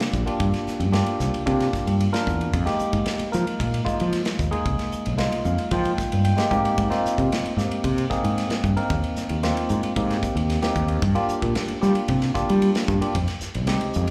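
A bright, clean tine electric piano and a modern studio drum kit open this excerpt of electric jazz fusion together, with a fretless electric bass joining at 0.1 seconds. The groove is straight at 113 BPM in 4/4, centred on F dorian, and the mood is intense and slick. The electric piano sits up front with a slapback echo, carrying the accompaniment through chords that move from C9sus4 to Fm11, Abmaj9, Gm7 and Fm9, and it breaks into a fill from 5.2 to 6.8 seconds. The fretless bass is warm, direct and punchy, sitting forward in the mix, while the acoustic kit's hi-hat, ride cymbal, medium-tuned snare and tight kick sound from a small room. The whole performance comes across as a live club gig heard through the venue's PA, with light reverb and a small-room ambience.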